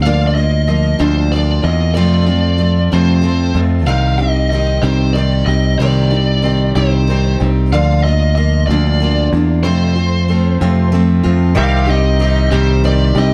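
A dark, lightly reverberant mix frames this reflective, wistful folk rock and heartland rock excerpt in 6/8: an up-front, bright picked electric bass anchors a dreadnought acoustic guitar whose picked accompaniment carries audible finger squeak, a biting overdriven lead guitar sings the melody from the start, and at 11.6 s a clean, twangy, compressed electric guitar riff arrives bathed in lush chorus.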